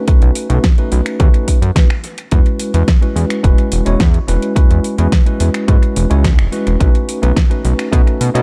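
Feel-good and sunny, this short excerpt of nu-disco moves at 107 BPM in a straight 4/4, sitting in E major. A fat, detuned sawtooth analog bass sits up front from 0.1 seconds, saturated and thick, with a filter pluck and fast attack that sustains into evolving tones. Alongside it, an electronic kick drum lands punchy and layered, while a pop drum kit adds a fat snare, metallic hi-hats and finger snaps, its hits trailed by tape echo. A clean tine electric piano carries the accompaniment through a combo amp, colored by medium tremolo, sidechain pumping and its own tape echo as it moves from B9 to E69 at 2.3 seconds and back to B9 at 6.8 seconds. The mix is dry in terms of room sound yet heavy on echo, giving the produced groove a close-up presence.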